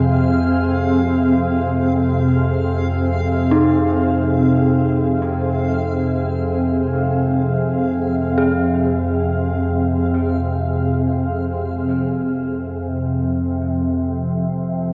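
Floating in free time, this desolate, dark ambient excerpt rests on a calm, nasal organ-like drone with ensemble chorus sitting up front, joined by a cloudy, blurred granular pad that is mellow and close, and a reversed, swelling texture glinting brightly in the background. At 3.5 s an eerie, inharmonic FM bell enters with chorus and tape echo, tracing detuned arpeggios in its middle register, and after the pad drops away at 11.6 s and the texture a moment later, only the bell and drone remain. The whole recording is drenched in a cathedral-like reverb and carries the worn, warbling pitch drift of old cassette tape.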